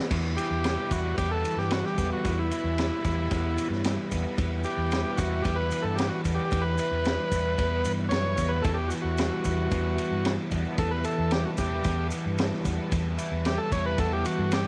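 A reedy, overdriven combo organ with light vibrato and tape echo sits up front carrying the melody in this trippy, hypnotic psychedelic rock passage in E minor at 112 BPM, over a crunchy, double-tracked guitar riff through a rotary speaker, a round fingered electric bass, a punchy vintage drum kit with a high-tuned snare and dark cymbals, grainy maracas far in the background, and a very quiet, distant string section holding bright, biting sustained chords, in a dry mix with little reverb.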